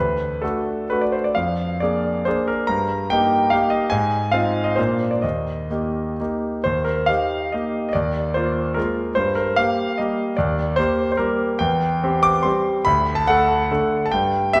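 Classical romantic triple-time dance for solo concert grand piano, graceful and proud, moving with dotted rhythms and free rubato. The brilliant, up-front piano has deep bass, long sustain and audible action noise, and it sits in the lush reverb of a church or concert hall before a new section begins at 6.6 seconds in this short excerpt.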